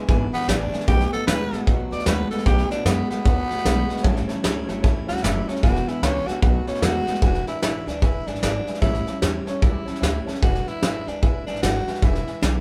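Rockabilly at 151 BPM with a swung feel in E mixolydian, rollicking and rowdy, as a raspy, growling tenor saxophone solos over twangy, slightly broken-up electric guitar until 7.2 seconds, with a thumpy pizzicato upright bass on gut strings, a soft brush drum kit with a punchy kick up front, and a bright picked dreadnought acoustic guitar and a dark, mellow upright piano with audible action noise in the background, all captured as a band playing live in a small room.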